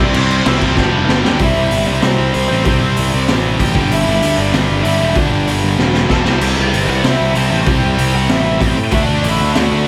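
A big arena sound wraps this upbeat, rebellious punk rock excerpt in a moderate, lush hall reverb. At 191 BPM in a straight 4/4, a growly, fuzz-laden picked electric bass sits up front beside a raw garage drum kit with a punchy kick and a medium-tuned snare, its gritty, saturated tone rolled off at the top. Drum fills land at 0.8 and 5.8 seconds, and from 1.4 seconds the feel drops into half time. Two tight distorted guitars hold the riff in the background with slapback echo, one bright and the other warm, while a double-tracked high-gain guitar adds a very quiet riff only until 1.4 seconds. Over them, a nasal lead guitar with a parked wah carries the melody through overdrive and delay as the chords move from C to G, back to C, on to G5, back to C again and finally D.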